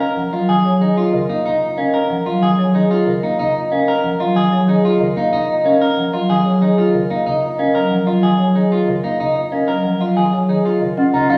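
A ringing vibraphone with slow motor vibrato carries the melody from the start, alongside arpeggios from a picked, up-front clean electric guitar and a delicate, bell-like celesta in the background, with a buzzing, woody marimba entering at 0.2 seconds to supply a dark, round accompaniment. This bright, hypnotic minimalist pattern music moves at 186 BPM in 6/4 in Eb minor, resting on an Ebm9 chord throughout this fragment of a longer piece. At 11.0 seconds a distant oboe with light vibrato slips in with a brief second line, all set in a wet recital hall reverb heard from further back in the room.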